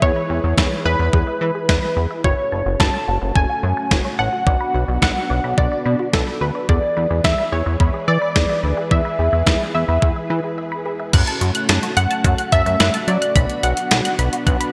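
Bright 1980s-style digital production, bathed in a lush hall reverb, frames this wistful synth-pop excerpt at 108 BPM in E mixolydian: a punchy, detuned polysynth comp carries the melody over a glossy, nasal chorused synth bass and a thumpy 12-bit drum machine with gated reverb, while mellow string-machine cellos hold sustained chords and a squelchy resonant blip pluck plays arpeggios in the background, with a short break at 10.6 seconds before a new section begins at 11.1 seconds.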